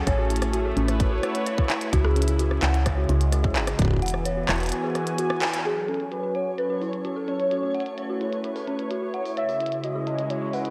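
A dark, detuned synth bell with an eerie, inharmonic warble spins chorused, phased and delayed arpeggios through this cerebral IDM excerpt in F# minor at 129 BPM, over a smooth, detuned analog pad holding sustained chords from Amaj7 through C#m and Eadd9. A woody, round FM bass with tube saturation and a tight electronic kick stay up front until about 4.0 to 4.7 seconds, while a tape-warm glitchy kit of handclaps, clicky hi-hats and rim clicks, treated with slapback echo and delay, runs throughout. After a band accent at 5.4 seconds, a velvety sawtooth lead with vibrato carries the melody from 5.7 seconds as a flickering, grainy granular texture murmurs in the background, all set in a lush hall reverb that gives a big arena sound.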